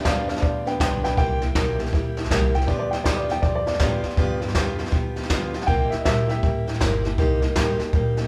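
A retro, rowdy rockabilly groove swings in 4/4, heard here as a short slice cut from a longer piece. A dark upright piano carries the melody with a mellow, woody, vintage tone and takes a solo, its line dropping out at 6.7 seconds. Up front, a picked steel-string acoustic guitar supplies warm accompaniment, while a pizzicato upright bass with gut strings sits in the background, thumpy and dark. The jazz brush drum kit is the loudest part, mixing a boomy kick, a medium-tuned snare and hi-hat, its sound distant and roomy as if caught in a small room. The harmony moves through G7 and C7 before turning to Cm7 near the end, and the band plays live together in one room, bathed in a moderate large studio reverb.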